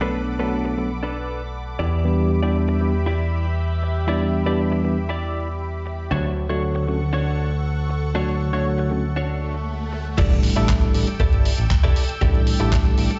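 Sensual and cosmic, this nu-disco excerpt moves at 118 BPM in a straight 4/4, set in E dorian over Bm7, Em7 and Dmaj7 before turning to A7sus4. An up-front tine electric piano carries the accompaniment with slapback echo and sidechain pumping. Above it, a lush, detuned unison pad holds slow-attack chords, treated with chorus, phaser and the same pumping. A clean, direct-recorded electric guitar plays a picked riff through analog chorus, a low-pass filter and slapback echo, while a bright picked electric bass sits forward in the low register. An electronic swell in the background begins at 9.4 seconds and leads into an impact. At 10.2 seconds the drop arrives with a thumpy electronic kick and a dusty, tape-warmed sampler-style kit of handclaps, hi-hat and crash, whose hats, cymbals and snare are softened by low-pass filtering. The music sounds as if played on a big sound system in a bare stone room, with light reverb and a dark top end.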